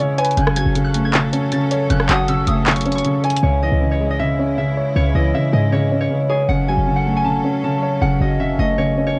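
A brooding, hard-hitting half-time trap excerpt at 157 BPM in C# minor opens with a ringing, fingerpicked concert harp melody over a dark, worn baby grand piano with audible action noise, clear bowed symphonic strings with light vibrato, and a detuned, gliding portamento lead in the background that drops out at 2.7 seconds, while a punchy trap kit with bright hi-hats, handclaps and rim clicks carrying 12-bit sampler grit drives until 3.4 seconds and a tight, short 808-style bass enters at 0.4 seconds and carries on to the end, all colored by cassette tape, filtering, tape echo and light reverb.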